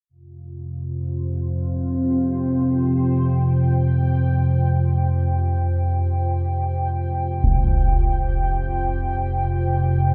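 A bright, resonant pad of detuned sawtooth and sub-octave tones fades in at 0.1 seconds on a sustained Fsus2 chord, opening this desolate, ominous dark ambient drone that unfolds in free time, cut from a longer piece. At 0.4 seconds a warbling, vintage analog drone enters low and up front, its evolving pulse-width tone thickened by lush chorus. At 7.4 seconds a close, dry concert bass drum, dulled by a low-pass filter, sounds briefly within a light small-room ambience.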